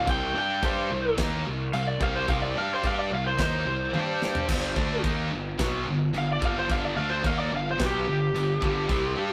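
A dark, overdriven lead guitar solo sits up front from the opening of this heavy, aggressive metal excerpt at 109 BPM in 4/4. Beneath it, three bright, scooped guitars (two of them high-gain, one double-tracked) churn out riffs in the background alongside a growly fuzz bass, as the harmony moves from C5 to G5. A polished acoustic kit with a punchy kick, medium-tuned snare, toms and china, crash and splash cymbals drives it all, breaking into a fill at 3.9 seconds, all heard in a rough rehearsal-room recording with light reverb.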